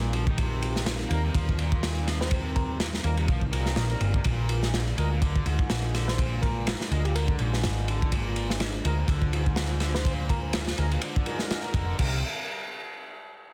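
A swung breakbeat groove at 124 BPM in 4/4 drives this swaggering, energetic C minor excerpt, cut from a longer piece and sitting in a drop, with a crunchy, saturated acoustic kit up front whose tight kick, medium-tuned snare, ride and crash and dark cymbals sound gritty with a rolled-off top. A round, punchy hollow-body short-scale bass, picked and amped, sits alongside the drums from the start, while a bright, overdriven, double-tracked garage guitar riff with tape echo churns along with them. In the background, a deep, moody analog pad of detuned sawtooth and triangle waves with a sub octave holds sustained chords through chorus, lo-fi sampler grit and sidechain pumping as the harmony moves from Cm7 to Bb7. A clear, tight brass section with light vibrato and soft attack adds classical-style stabs from 1.1 seconds, touched by tape echo. A gentle, keys-like FM lead with a fast, decaying attack and a small-speaker tone offers a brief phrase at 2.2 seconds before returning for a fuller melody from 6.1 seconds, all framed by light studio reverb and a dense, heavily limited modern master.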